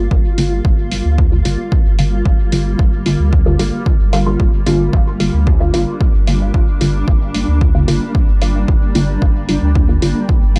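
Dry and gritty with a cassette-tape grain, this hazy, nocturnal dub techno excerpt at 112 BPM in G minor rests on a Gm7 chord, where a blurred, evolving granular cloud pad with its own reverb and a muted, detuned sawtooth chord stab, filter-swept throughout and coloured by phaser and dub echo, are both sidechain-pumped alongside a smooth sine sub bass, all beneath a punchy, up-front analog kick and a faint electronic hi-hat that enters at 0.4 seconds.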